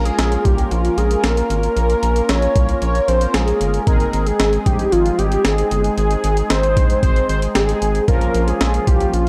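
The recording has a dark, warm production with light reverb, and this brief cut from a longer synth-pop piece moves at 114 BPM in a straight 4/4, settling into a melancholic, cool mood in Bb dorian. Up front, a thick unison lead carries the melody between F4 and Db5, its detuned sawtooth tone given a mellow edge by a sub octave, a moving notch and vibrato. Beneath it, an analog synth brass part supplies fat, brassy accompaniment from F3 to Bb4, sitting lower in the mix with a chorus effect and a filter sweep on its detuned, wave-folded sound. A round analog bass, deep and sustained, holds the low end between G1 and C2 with its own filter sweep. A gritty, compressed breakbeat sampler-style kit enters at 0.1 s with a thumpy kick, a high-tuned snare and hi-hat, while the harmony moves from Bbm to Ab at 3.9 s and back to Bbm at 8.1 s.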